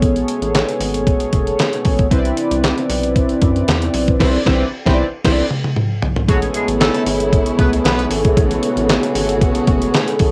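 A home cassette recording with light reverb carries this feel-good, smooth stretch of early-eighties boogie funk in A major at 115 BPM, cut from a longer piece, with an up-front, thumpy 8-bit drum machine, detuned and tape-warm, driving beside a rubbery, hollow square bass and a glossy, chorused polysynth laying down Amaj9 and Cmaj9 chords. A band accent arrives at 4.2 seconds with a drum fill leading into a new section at 6.3 seconds, where lush, bowed symphonic strings hold sustained chords and a clear horn section adds a brief second line ending at 8.1 seconds.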